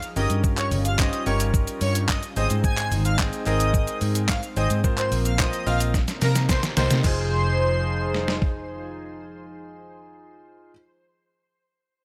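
Energetic yet bittersweet, this short dance-pop fragment, cut from a longer piece, moves in a straight 4/4 through a drop that runs to 7.0 seconds. A detuned 8-bit digital drum machine sits up front with a thumpy kick, a medium-tuned snare, hi-hat, shaker, handclaps and a crash, its tape-warm sound carrying the character of a small room, and it plays a fill from 5.9 to 7.0 seconds before stopping at 8.5 seconds. Beneath it, a vintage muted fingered electric bass is dark, round and punchy, pumping with sidechain alongside a clear grand piano whose intimate, polished tone carries audible action noise and long sustain as both hold on to 10.7 seconds. An airy, dreamy lead sings the melody with a soft touch, vibrato and a bright, detuned unison edge, dressed in chorus and tape echo, while a shimmering, retro pulse-width pad breathes in the background with slow-attack, sustained chords. A very quiet, hollow group handclap adds a human touch, and the whole mix stays close and dry as the chords move from Eb7/G through Ab and Bbsus2 to Cm7, landing on Fm7.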